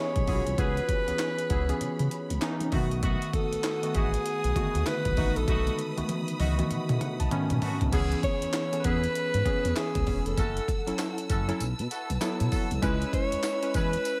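A breathy, intimate alto saxophone carries the melody from the first moment, set over round, detuned analog keys with chorus and a soft bed of lush, bowed strings held quietly behind. This is a confident, bouncy R&B cut in the new jack swing style, taken from a longer piece, with a swung sixteenth-note feel. At 0.2 seconds a smooth, dark synth bass with gliding portamento joins alongside a gritty, pitched-up breakbeat kit of thumpy kick, high-tuned snare, hi-hat, handclaps, tambourine, toms and crash, overdriven and pushed up front. A tight, vintage horn section with light vibrato and digital delay adds stabs from 0.3 seconds, while the saxophone's own delay gives its clear tone a faint echo. A drum fill and a synth keys fill lead into the second section at 7.9 seconds, where the harmony moves from minor seventh chords through a suspended dominant before settling again. The mix is dry and close, with little reverb.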